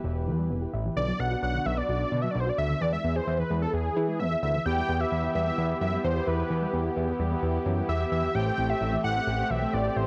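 This cool, driving pop track, cut from a longer piece, opens with a fat, nasal analog bass sitting up front beneath a very quiet, smooth pad of sustained chords and a soft, round pluck spinning arpeggios in the background, its dark tone colored by chorus, cassette tape saturation and analog delay. At 1.0 seconds a thick unison lead enters up front with the melody, its bright, detuned sawtooth tone carrying vibrato through cassette tape and analog delay. The harmony moves from Em through Bm to E before returning to Em and settling on Am7. At 4.7 seconds bold, brassy analog synth brass joins as accompaniment, sweeping its filter with chorus and cassette tape on top. A moderate spring reverb and the feel of a home cassette recording give the whole piece a lo-fi, retro character.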